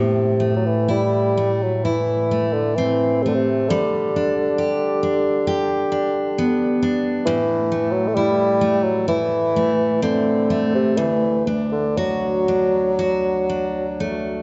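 A solo bassoon with light vibrato and classical phrasing carries the melody from the start, up front over a full-bodied picked jumbo steel-string guitar, in a longing, haunting Celtic slow air in A dorian. The rubato pace drifts around 58-68 BPM in 4/4 as the harmony moves from Am to G, back to Am and then to D. A long, wet church reverb and a dark, warm production give this fragment of a longer piece a cavernous glow.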